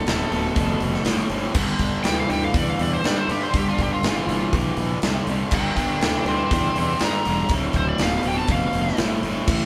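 An overdriven slide guitar sings a warm, fingerpicked solo in D minor from the first second, riding over a cranked, double-tracked stack guitar riff, growly fuzz bass and a punchy big-room rock kit with bright cymbals in this brooding, smoky blues rock and southern rock excerpt at 121 BPM, cut from a longer piece and played live in one room as the harmony moves from Dm to G5 at 1.6 seconds and back to Dm at 7.5 seconds.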